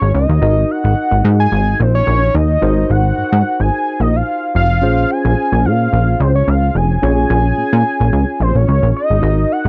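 Early-eighties boogie funk at 109 BPM with a feel-good, smooth mood, this short cut pairs a punchy, resonant analog bass pluck up front with a fat, detuned sawtooth lead carrying the melody through chorus and vibrato over a worn, slightly out-of-tune tine electric piano, moving from Ab7 to Bbm9 in a dry, close 1970s-style studio sound.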